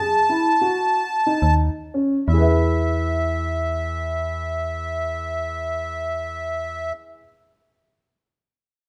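A reedy, sweet accordion melody with light tremolo tuning opens alongside a dark, mellow concert grand playing boxy, long-sustained arpeggios, the opening slowing down through its first 2.3 seconds over an F#m chord. A metallic, digital FM bass with a fast attack and a decaying tone enters at 1.4 seconds, and all three parts sit up front in a moderate recital hall as the harmony settles on E. This hopeful yet restless piece of contemporary chamber music in an uneven meter is cut from a longer piece.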